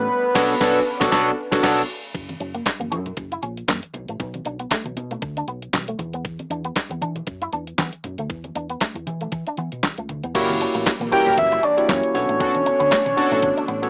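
Slick and late-night, this excerpt of early-eighties boogie funk moves at 117 BPM in B minor with a light sixteenth-note swing. A fat, mellow analog lead carries the melody up front in the opening 1.6 seconds and again from 11.1 seconds, joined in those outer passages by barky, lightly overdriven tine electric piano, bold brassy synth brass set in the background, and a lush, detuned unison pad that sits very quiet beneath them. Throughout, a bright, twangy electric guitar with an envelope filter and subtle chorus plays a riff over a round, punchy hollow-body bass, while a detuned 8-bit drum machine with a thumpy kick, handclaps and crash sits up front from 0.3 seconds. In the middle stretch the band thins to guitar, bass, drums and very quiet, low-tuned congas, which enter at 2.3 seconds, as the harmony moves from F# through Bm7 to an E7 with the third omitted before returning through F#7b9 to Bm9. 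The whole thing has a lo-fi home-cassette character with light reverb and a small-speaker sound, closing on a brief electric piano fill.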